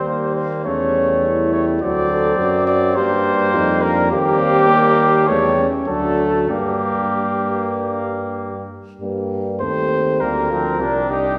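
Classical brass quintet in a stately, warm mood, taken from a longer piece and played with rubato in 4/4. A mellow lead trumpet with light vibrato carries the melody up front, while a clear, distant second trumpet traces a second line and a roomy trombone supplies background accompaniment. The bass trombone, also touched with vibrato, sits forward underneath, a French horn joins the accompaniment at 0.7 s, and a long, wet hall reverb of about 2.2 s surrounds the ensemble.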